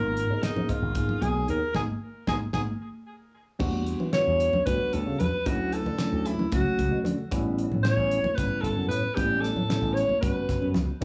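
Slick and intense, this electric jazz fusion excerpt in 7/8 sets a breathy, whispered alto saxophone melody with tape echo over bright, clean tine electric piano, a growly slap bass pushed through an envelope filter, a damped 70s drum kit with a fat snare and dark cymbals, and high-tuned congas that join at 0.6 seconds in the background, with a band accent from 1.8 to 3.6 seconds before the music moves into a new section, all inside a small club room.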